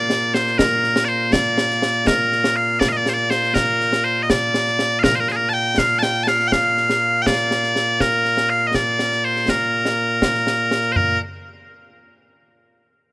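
Ceremonial and proud, this short excerpt of Scottish traditional pipe music moves at 81 BPM in a straight 6/8 in Bb major, with loud bagpipes carrying the melody up front in a piercing, continuous solo voice that spans Bb2 to A5. Concert snare drum, bass drum and toms sit a little lower in the mix, close and dry with bright cymbals, playing from 0.1 to 11.1 seconds under the pipes. Light reverb gives the whole a touch of space before the piece is cut off shortly after a new section begins at 11.0 seconds.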